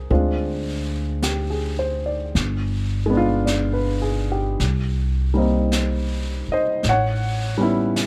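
Intimate and tender, this short excerpt from a longer jazz ballad moves at a slow 54 BPM in 4/4 with a gentle swing, set in C minor. A baby grand piano carries the accompaniment from the first moment, sounding up front and natural, with short sustain and the soft clatter of its action audible beneath the chords. The upright bass is plucked on gut strings, woody and thumpy, and also sits up front in its low register. A vintage brush drum kit enters at 0.1 s, heard at a distance in a roomy studio space, its high-tuned snare and hi-hat played with brushes and given a rolled-off top. The harmony passes through Dm7b5, G7b9, Cm7 and A7, and the dry recording carries a faint mains hum.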